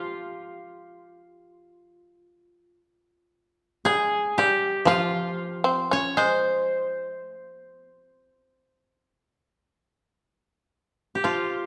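From the opening, a dry, woody koto plucked with fingerpicks carries the melody up front while a buzzing, percussive, fretless shamisen traces a lower second line and a second fingerpicked koto supplies accompaniment until 8.0 s, forming an austere, calm fragment of traditional Japanese chamber music in C miyako bushi that moves in a rubato 4/4 around 52-60 BPM within a moderate scoring-stage reverb.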